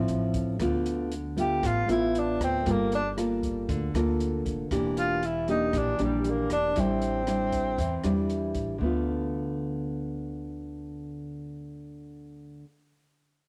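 A breathy tenor saxophone, a thumb-plucked nylon-string guitar and a pizzicato upright bass open together on a rootless D minor chord, setting a wistful, smooth bossa nova in D minor at 117 BPM. From 0.6 seconds the saxophone takes a solo in a subtone with vibrato, scooped notes and a soft, whispered attack, sitting intimate and up front in the mix. The classical-style guitar, also up front and warm, carries the accompaniment through a progression of Dm6, Gm9, Em7b5 and A7sus4, while the woody, thumpy bass holds the low end. An open jazz kit of hi-hat, boomy kick and rim click sits quietly behind them in a studio room. The saxophone and guitar both carry the soft haze of cassette tape, and after the solo ends the guitar and bass continue into a new section from 8.8 seconds, returning to Dm6, as this short cut from a longer piece closes at 12.7 seconds under a light reverb.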